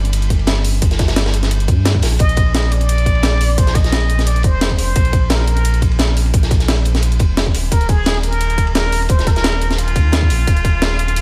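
A straight 4/4 liquid drum and bass groove drives this soulful, lush clip, cut from a longer piece, built on two layered breakbeat kits: a compressed, sampler-style kit with gritty hi-hat and a high-tuned snare, and a crunchy, saturated acoustic kit sitting in the background with dark, high-passed ride cymbal and a medium-tuned snare. A tight, overdriven electronic kick enters at 0.3 seconds and punches through as the loudest element. Beneath it, a deep sine sub bass with an added octave holds sustained, full notes up front, moving from a chordless opening to a Bb5 chord and then Ebsus2. At 2.2 seconds a plunger-muted trumpet takes the solo in a jazz style, its bright wah-wah tone carrying light vibrato and a forceful, punchy attack. Tape echo and a roomy, distant placement give the horn depth, while light reverb softly wraps the mix.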